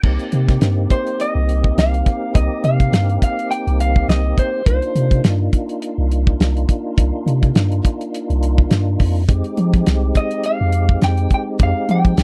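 This excerpt of brooding, soulful straight-eighth soul blues in C minor opens with organ, bass and drums together at a relaxed 104 BPM in 4/4, with a light swing on the sixteenths. The cloth-damped drum kit sits up front with a thuddy, fat snare, tight kick, dark cymbals and a rolled-off top, using kick, snare, hi-hat and crash in a small-room sound. Beneath it, a punchy sine sub bass with a pitch-drop attack holds long, deep notes, also placed up front. The tonewheel organ plays quiet accompaniment with audible key click, a slow rotary speaker and chorus vibrato. An electric guitar through a small old amp carries the melody from 0.9 to 5.2 seconds and returns at 10.2 seconds, its picked, compressed tone slightly broken-up, while the harmony moves from Cm7 to Fm7 at 9.3 seconds. The whole recording is dry and close, in a 1970s studio style with little reverb.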